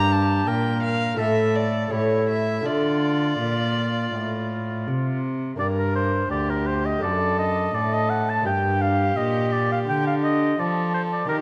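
Grave and solemn, this excerpt from a baroque-style sonata movement moves at 84 BPM in 4/4 with a rubato feel, shifting from D minor to G minor at 5.6 s. A close-miked oboe with light vibrato carries the melody up front, while a single bowed violin with a reedy gut-string tone plays a second line. A rich, bowed cello holds the bass, and a delicate, fingerpicked lute with double gut strings adds accompaniment in the background, all set in a dark production with moderate concert hall reverb.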